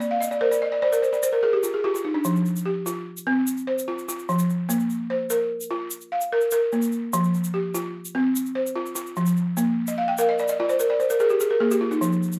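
Reflective and hypnotic, this short cut from a longer piece of West African traditional music sets a balafon against an egg shaker at 98 BPM in a straight 12/8. The balafon carries the music in arpeggios spanning F3 to G5, its woody, buzzing tone struck with rubber mallets and placed up front. Fills from the balafon open the passage and return near its close, from 9.9 to 12.0 seconds. The egg shaker sits much lower in the mix, a grainy, bright presence recorded close. The harmony turns between Bb and F, and close, detailed microphones with light reverb capture the balafon's dry, airy character.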